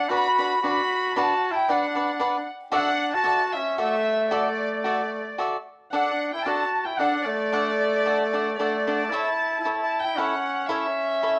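A rich, earthy chamber violin section carries the romantic, festive melody with light vibrato while a clear, classical-style solo trumpet adds a second line beneath it, both sounding distant yet up front, joined at 0.1 seconds by a crisp, picked acoustic cavaquinho accompaniment in this rubato 3/4 mariachi fragment of a longer piece, moving from Bm through Dadd9 to D and A across a repeated section, all captured on cassette tape in a home recording with a wet small-room ambience.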